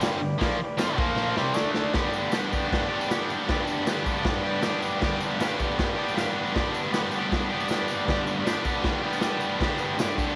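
Garage rock with a rowdy, raw edge, this 10-second excerpt from a longer piece drives along at 157 BPM in a straight 4/4, centered on G mixolydian. An overdriven electric guitar sits up front with a bright, picked, double-tracked riff spanning G2 to G4, moving through G, Bb5 and D5 shapes. Beneath it, a raw garage drum kit of hi-hat, kick and snare offers a punchy kick and a medium-tuned snare, its tone dark and smooth with a rolled-off top, set in a stone room ambience. A vintage combo organ holds mellow, clean sustained chords between D4 and F5 in the background, bathed in spring reverb, while a jingly tambourine adds sparkle further back. A drum fill from 1.2 to 1.9 seconds launches the second section, and the whole recording carries moderate plate reverb and a small room feel.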